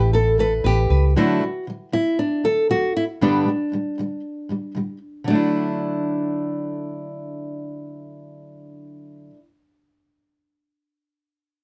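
Heartfelt and carefree, this acoustic pop excerpt in D major moves at 117 BPM with a light sixteenth-note swing: a bright nylon-string guitar carries the melody through plate reverb over a warm, fingerpicked steel-string acoustic guitar, while a second nylon-string guitar adds brief arpeggios and a round, foam-muted vintage electric bass plays only until 1.1 s, within a dark production and moderate studio reverb.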